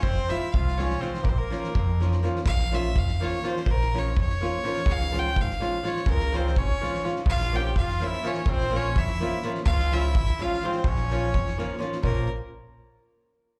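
A straight 5/8 groove drives this restless, fiery Balkan wedding-band fragment, taken from a longer piece and captured as a live gig through the venue's PA with club reverb. A single close, biting fiddle with light vibrato and an airy, earthy bow carries the melody over a fat, detuned sawtooth analog bass with a moving notch, while a loose acoustic drum kit adds a punchy kick and a fat snare in a pumping room. A fingerpicked flamenco guitar joins at 0.3 seconds, and a distant, classical-style trumpet plays a second line that drops out at 2.2 seconds and returns at 6.4 seconds; fiddle, guitar and trumpet all carry plate reverb and slapback echo over chords moving from Fm through Bbm and Db.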